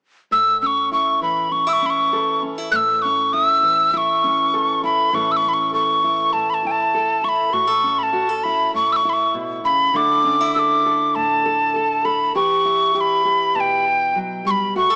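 A breathy, mellow tin whistle carries the melody up front, its crisp, chiffy attack and vibrato lifted by a digital delay, in this nostalgic, anthemic folk excerpt at 100 BPM in a straight 4/4. Beneath it, a fingerpicked steel-string acoustic guitar supplies warm accompaniment from 0.3 seconds, moving from A to Dsus2 at 9.9 seconds and Emadd9 at 12.4 seconds. Light reverb and a small-speaker sound color the recording.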